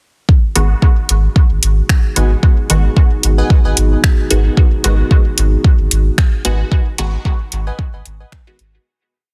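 Dub techno at 112 BPM in G# minor, this short, complete piece has a cavernous, nocturnal mood, built on a single G#m7 chord with a 16th-note swing. An up-front electronic kick drives a four-on-the-floor pulse from 0.3 seconds, joined by a deep house kit of programmed closed hi-hats and finger snaps on the backbeat, with soft clipping on the snare. A soft, round sub bass sits up front on G#1 with an off-beat line, and its sidechain pumping breathes against the kick beneath a dark, nasal analog pad held in slow-attack chords with chorus. Sparse filtered dub stabs in a muted sawtooth and pulse tone ring through phaser and dub echo, shifting one chord shape in parallel, and from 2.2 seconds a crisp wavetable stab adds higher echoing chords with a moving notch and its own pumping. The dense, heavily limited master places it all in a digital ambience, and the groove fades out from 6.0 seconds to its close at 8.9 seconds.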